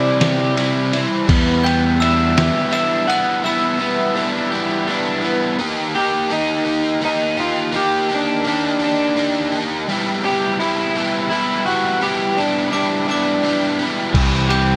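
A slightly broken-up, lo-fi electric guitar through a small old amp carries the picked melody, with subtle chorus, in this carefree, upbeat indie rock excerpt at 56 BPM in 6/8. Two overdriven guitars with analog chorus play riffs, one compressed and up front, the other crunchy and bright. Behind them, a sparkling, bell-like glockenspiel with brass mallets rings with delay, while a growling, overdriven fingered bass and muffled, pitched-down sampler-style drums with a thumpy kick, fat snare and gated reverb drop out by 3.3 seconds and return at 14.1 seconds, all over C, Em7 and Ebmaj7 chords in bright 1980s-style digital production with light reverb.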